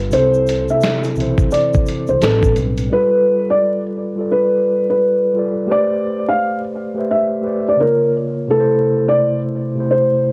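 A muted, boxy felt upright piano carries the melody over a mellow tine electric piano from the opening, both filtered and tape-softened, setting a reflective, melancholic lo-fi hip hop mood with a lazy swing. Briefly underneath, a woody pizzicato upright bass, a gritty sampler-style kit with a thumpy kick, snaps and hi-hat, and a close, grainy shaker set in the background play until 2.9 s, leaving the two pianos alone for the rest of this cut from a longer piece. Light reverb and vinyl crackle give the whole a dusty, home-taped intimacy.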